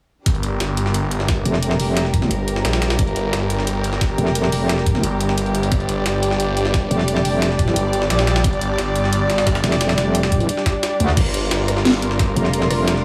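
A metallic, aggressive FM wobble bass with chorus and tube saturation sits up front from 1.5 seconds, growling between F1 and D2 over a phased, detuned saw bass that swirls thick, saturated and pumping beneath it, in this tense, futuristic excerpt of dark technical drum and bass at 176 BPM in G minor. A dark, intimate string section bowed sul tasto holds sustained Gm chords with light vibrato and a soft attack, pumping against the kick, while a knocking electronic kick sits alongside an overdriven kit of cracking snare, bright hats, rim clicks and crashes. A gritty, tape-toned jungle sampler kit with a high-tuned, pitched-up snare and filtered hats adds a compressed layer, all set in a small room with light reverb.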